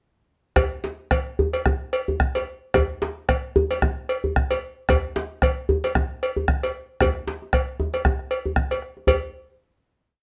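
Lightly reverberant and up front, this short, earthy West African traditional drum ensemble piece drives forward in a swung 4/4 and gathers speed throughout, as a deep, dry bombo, a metallic, saturated cowbell playing a bell pattern and a tight, cracking djembe struck with hard hands play together from 0.6 seconds until a final hit at 9.1 seconds.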